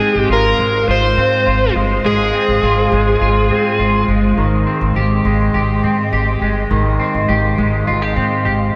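A straight 4/4 pulse carries this blissful, floating dream pop fragment, cut from a longer piece, as an overdriven, dark slide guitar sings the melody through delay for the first 4.1 seconds before falling away. Around it, an ethereal, airy pad of detuned sawtooth and triangle tones with a noise layer holds slow-blooming chords through ensemble chorus, while a bright, clean electric guitar picks lush, chorused arpeggios with delay and a woody, growly pizzicato upright bass anchors the low end. The harmony moves from Ab6 to Abmaj7 at 4.4 seconds, all set in a lush hall reverb.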